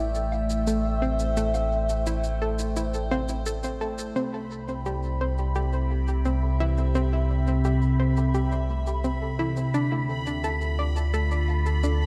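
An echo-heavy mix bathed in a moderate plate reverb gives this mysterious, hypnotic slice of sequencer-driven ambient space music its spacious character. A round, deep sine sub bass sits up front, while an evolving wavetable pad morphs through sustained chords under a phaser and its own reverb, and a bright analog pluck with chorus and delay repeats its riff throughout. A smooth, dark sawtooth lead carries an expressive, vibrato-tinged melody with subtle chorus and delay, then falls away at 3.5 s. From 4.3 s a bubbling, resonant stepped-filter texture joins alongside very quiet, mellow arpeggios from a soft triangle-and-sine pluck, as the tape-warm electronic shaker and woodblock, echoed by delay and present from the start, fade in beneath the harmony moving from Am7 to C and on to Dm. The passage is cut from a longer piece.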